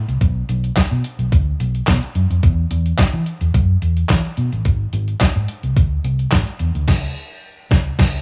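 Early-eighties boogie funk with a late-night, funky mood, this short cut from a longer piece rides a straight 4/4 groove. A vintage muted fingered electric bass sits up front from the very start, its dark, round, punchy tone shaped by a foam mute and an amp, moving between G#1 and E3. A crisp 8-bit digital drum machine joins at 0.1 seconds, its sampler-style kit of thumpy kick, medium-tuned snare, hi-hat, handclaps and crash cymbal placed up front and given a tape-softened edge. A digital ambience surrounds the pair, and the whole has the character of a home recording on cassette. At 6.9 seconds the band hits an accent that carries through to the end at 8.2 seconds.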